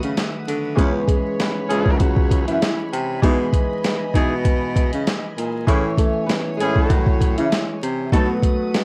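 Gritty, thumpy sampler-style drums sit up front in this moody, reflective boom-bap hip-hop excerpt, with a breathy, whispered baritone saxophone carrying the bass, fingerpicked Celtic harp ringing in the accompaniment, a dark flamenco guitar melody with tape echo entering at 0.8 seconds, warm horn stabs and distant, floating string chords in the background, all captured as a home cassette recording with vinyl crackle and light reverb.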